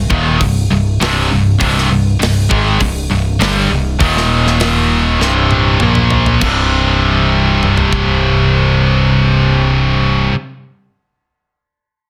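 A straight four-beat pulse anchors this heavy, aggressive metal excerpt, cut from a longer piece, with a tight acoustic drum kit of kick, snare, toms, hi-hat and crash setting the groove from the opening moment. Two bright, scooped, distorted electric guitars sit up front, one compressed and the other high-gain, both churning out a low riff that moves from C minor through Eb5, C5 and Bb5 power chords before landing back on C5. Beneath them a growling, overdriven picked bass adds a warm, amped weight in the lowest register. The drums, mid-forward with bright cymbals, a medium-tuned snare and softly clipped kick and snare, play a fill from 5.2 seconds that leads into a shorter second section, then drop out at 8.1 seconds while the guitars and bass carry on. Light reverb and a dense, heavily limited modern master keep the sound loud and compact.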